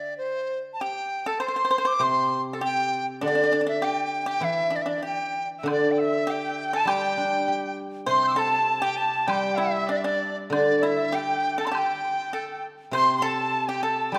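Set in a loose 2/4 with a rubato, breathing pulse, this excerpt of Chinese traditional chamber music feels pastoral and festive. A large dizi carries the melody up front, its bamboo tone pure and bright with a buzzing membrane, tongued notes, vibrato, and a slightly unsteady quality. Beneath it the guzheng, also up front, supplies a ringing, silvery accompaniment in the low and middle register. A dry, percussive pipa enters at 0.8 s with a second line. At 5.6 s, just before the music moves into its second section, a solo erhu adds another bowed line, dark and woody with vibrato and portamento. As the second section begins at 5.7 s, a very quiet, dark-toned woodblock joins as percussion. A moderate recital hall reverb gives the ensemble a sense of space.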